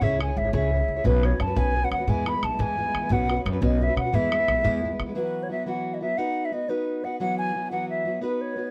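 A lively 6/8 Celtic jig at 117 BPM in E major, this cheerful folk excerpt features an airy, hollow wooden flute carrying the tongued, vibrato-touched melody up front over a boxy fingerpicked parlour guitar, while a dark, thumpy gut-string upright bass and a boomy, dry bodhran drive the band in a small room until both drop out at 5.1 seconds, leaving flute and guitar to finish the second section alone.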